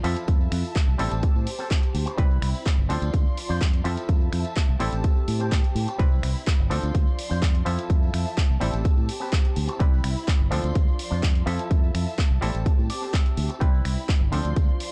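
Up front, an overdriven, layered electronic kick drum leads this joyful, feel-good filtered disco house excerpt at 126 BPM, with a warm, punchy fingered bass cycling through Fmaj7, Am7, Cmaj7 and Dm7. A muted, twangy clav with phaser, lush bowed strings with vibrato, and a scooped envelope-filtered guitar riff in the background all pump under sidechain and a low-pass filter, while an analog drum machine adds finger snaps, handclaps and pumping hi-hats over a very quiet, dry tambourine. Clean electric guitar fills appear at 4.6 and 12.7 seconds, and the mix sits in a dark digital ambience.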